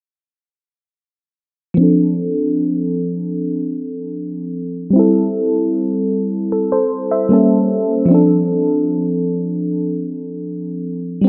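Late-night and moody, this short R&B passage is cut from a longer piece and rests entirely on a mellow FM electric piano playing accompaniment in a straight 4/4. The piano enters at 1.7 seconds and sits up front with a round, full-bodied and dark tone: each note has a fast attack and then decays, with a noise layer under the body of the sound. Chorus and a low-pass filter color the part, and a filter sweep runs across it from 1.8 seconds until the piece ends at 11.3 seconds. The harmony moves from Dm7 to Am7, then through a tense A7b9 before settling back on Dm7. A moderate, lush hall reverb with a long tail surrounds the piano and gives the soft chords a spacious, after-hours glow.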